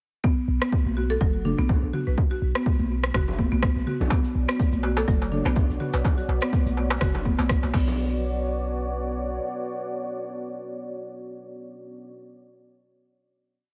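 Spiritual, hypnotic afro house in B minor at 124 BPM with a swung sixteenth feel, where a punchy four-on-the-floor electronic kick and a deep, boomy 808-style bass in a dotted rhythm drive a woody, buzzing hard-mallet marimba step sequence with digital delay, programmed afro-pop kit hats and backbeat with rim, tom and crash, and distant ringing congas, before a crisp metal-shell darbuka, grainy maracas and a moody detuned analog pad with chorus join at 4.1 seconds and the pad carries the final hit from 8.0 seconds to the close.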